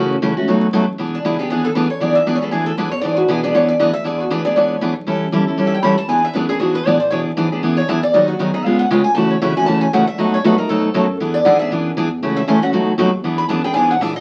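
A playful swung 4/4 gypsy-jazz groove opens this clip from a longer piece, with a bright, boxy parlour guitar picking the accompaniment up front over a deep, thick saturated sub bass in the background, while a full-bodied dreadnought guitar enters at 1.1 s to take the solo through changes that cycle back to E7, all heard through a wet studio ambience and the crackle of a very old 78 rpm record.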